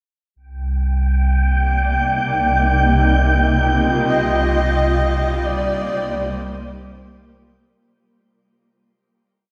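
A breathy, flute-like synth lead with vibrato and tape echo sings a short motif of arching phrases from 4.1 s to 6.4 s in this serene, reflective ambient piece in C minor at 65 BPM, where a round, deep sine sub bass holds the root from 0.4 s, an airy, wind-like noise texture sustains a dark high note, an ethereal, bright pad with an octave-up shimmer drifts slowly through its chords, and a calm, nasal organ-like drone sits in the background, the whole mix bathed in a moderate shimmer reverb as the piece fades out.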